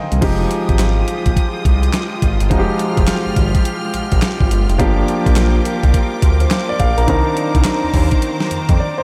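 A swung 105 BPM groove in 4/4 drives this punchy, bouncy new jack swing excerpt in F dorian, built on a gritty, pitched-down sampler-style drum kit with a thumpy kick, medium-tuned snare, hi-hat, handclaps and crash, under a smooth, saturated synth bass of detuned sawtooth and square waves with a moving notch. A clear, intimate concert grand piano sits up front with audible action noise and long sustain, opening with a fill at 0.0 seconds, while a lush, bright studio string section holds bowed chords with vibrato through Fm9, Gm7 and Cm9. The whole mix is soaked in a huge ambient reverb for a dreamy feel, and the drums and bass drop out for a break at 8.8 seconds.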